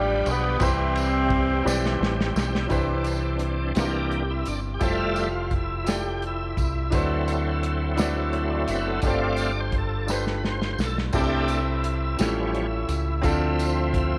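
A slow, straight 6/8 pulse carries this hopeful, jubilant slice of gospel, cut from a longer piece. An up-front saxophone section opens with a clear, pop-style melody that lasts only until 2.3 seconds, over open baby grand piano and a round, dark fingered electric bass that sits deep and close. A soul drum kit with punchy kick, smooth dark cymbals and a rolled-off top joins at 0.3 seconds, with a jingly tambourine set distant in a large room behind it, and a drum fill at 1.7 seconds leads into the next passage. From 2.7 seconds the tonewheel organ takes a full, shouting solo, lightly overdriven with key click, chorus vibrato and a slow rotary speaker, while its rich extended harmonies move through colorful ninth and thirteenth chords. A second drum fill arrives at 10.1 seconds, and light studio reverb gives the whole mix a modest sense of space.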